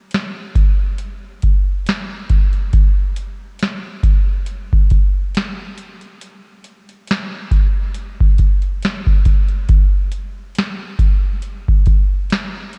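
Reflective and melancholic, this hip hop excerpt moves at an unhurried 69 BPM in 4/4 with a gentle 16th-note swing. A lone booming analog drum machine carries it from 0.1 to 12.8 seconds, sitting up front with a deep kick, crisp snare and metallic hi-hats, roughened by vintage 12-bit sampler grit and re-recorded in a large room. The dry sound carries the character of cassette tape.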